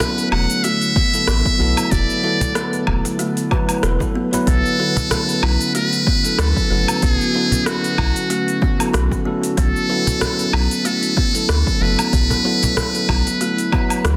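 Lightly reverberant and densely limited, this earthy, mystical organic downtempo excerpt in B minor at 94 BPM with a swung 16th feel sets a buzzy, close-miked metal-muted trumpet melody up front, colored by 12-bit sampler grit and tape echo, over a clean tine electric piano through a combo amp, ringing kalimba arpeggios, a dark, warbling tape-like pad with chorus and sidechain pumping in the background, an overdriven deep house kit with metallic hats, cabasa, rim click and woodblock, soft-handed woody cajon, a round sine sub bass entering at 0.3 seconds, and an overdriven deep electronic kick arriving at 1.0 seconds, as the chords move from E7sus4 to Bm9.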